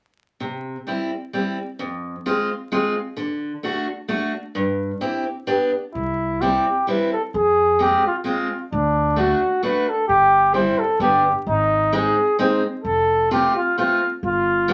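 Vinyl crackle and a wet small-room reverb frame this festive, jolly alpine dance band clip in C major, swinging along at 130 BPM in 3/4. A picked steel-string acoustic guitar, up front with audible finger squeak, opens alone at 0.4 seconds, walking through C, Fm, D and C/G. A roomy, distant flugelhorn takes the melody in a classical solo style from 5.9 seconds, and a woody, thumpy pizzicato upright bass joins at 6.0 seconds as the harmony turns through Ab and F before landing on G7.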